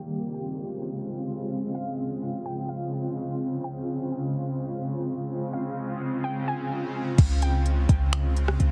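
Blissful and dreamy, this short atmospheric cloud-rap excerpt floats in a half-time hip hop feel over a Dbmaj7 chord. A shimmering, ethereal ambient pad holds sustained chords up front from the start, its detuned unison layers and octave-up shimmer softened by chorus and reverb and gently pumping against a sidechain. Behind it, a warbly, dusty pluck carries a lo-fi vintage melody in a high register, colored by chorus, phaser and delay, while a filter sweep runs through the opening 7.2 seconds. At 7.2 seconds a clean, boomy 808-style bass arrives on a deep sine tone alongside a smooth electronic R&B kit of soft kick, hi-hat, finger snaps, rim click and crash cymbal. The whole recording has a heavily compressed, filtered radio character that lends it a hazy digital ambience.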